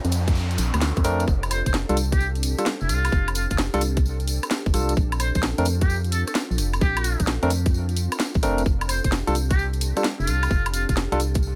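UK garage in a sunny, bouncy two-step groove at 130 BPM in F major, swung on the 16ths, this clip from a longer piece opens with an electronic noise sweep over a mellow, ethereal pad whose sustained chords carry ensemble chorus and sidechain pumping, moving between Bbmaj9 and F69. A tight, up-front electronic kick enters at 0.3 seconds beside a layered garage kit with a cracking snare, rim clicks, woodblock and hats, a jingly tambourine sits in the background, and a hollow, dark, organ-like FM bass gives the low end a percussive, decaying punch. Barky, clean tine electric piano stabs arrive at 1.0 seconds, and from 1.5 seconds a distant, breathy trumpet with a metal mute sings a buzzy, whispered pop-style solo with vibrato, trailed by dub echo.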